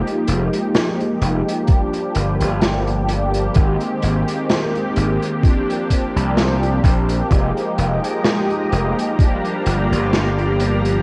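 A slow 64 BPM groove in 4/4 with a light 16th-note swing drives this melancholic, woozy vaporwave fragment in F dorian, cut from a longer piece. A raw garage kit of saturated hi-hat and snare with gated reverb and a punchy, overdriven slap bass start in the first second, joined at 1.7 seconds by a thumpy, up-front electronic kick with 12-bit sampler grit. Mellow, round, detuned synth brass carries the chords through Fm11, Gm7, Abmaj9 and C9sus4 with phaser, chorus and delay, and at 7.7 seconds a silky string machine arrives with a slow attack and ensemble chorus, all set in light reverb with a hazy cassette-tape coloring.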